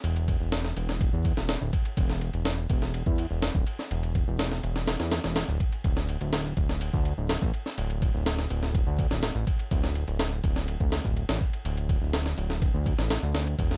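A compressed, pitched-up sampler-style breakbeat kit with a thumpy kick, a high-tuned snare, a ride cymbal and a tape-tinged grit sits up front in this raw breakbeat clip, joined throughout by a fat, detuned sawtooth analog bass with a filter sweep, fast attack and sustained notes, in a dry room.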